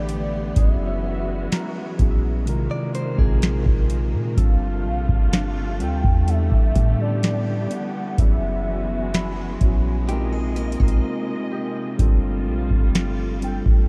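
Contemporary R&B at a slow 63 BPM with a longing, late-night mood, cut from a longer piece: a booming, dry analog drum machine with a deep kick, tonal snare and metallic hats sits up front beside a clean, boomy 808-style bass, while a mellow tine electric piano, a veiled con sordino string section and a velvety synth lead with chorus and diffuse ambient delay float over suspended ninth chords, a ringing fingerpicked kora glints in the background, and a bright, direct-recorded clean electric guitar adds brief arpeggios at 2.7 and 10.1 seconds before a break at 11.0 seconds.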